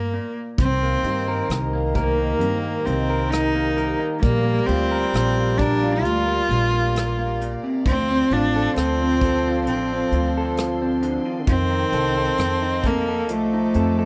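In a moderate studio reverb, this tender, intimate acoustic folk-pop ballad at 66 BPM carries a clear, earthy bowed cello melody with light vibrato and plate reverb over a warm, present French horn second line, slightly broken-up lo-fi electric guitar and woody pizzicato upright bass, while a soft brush drum kit with a punchy kick, hi-hat and rim click joins at 0.6 seconds alongside a very quiet sul tasto string section holding smooth sustained chords through Cm7, Gm7/Bb, Dm7 and F7.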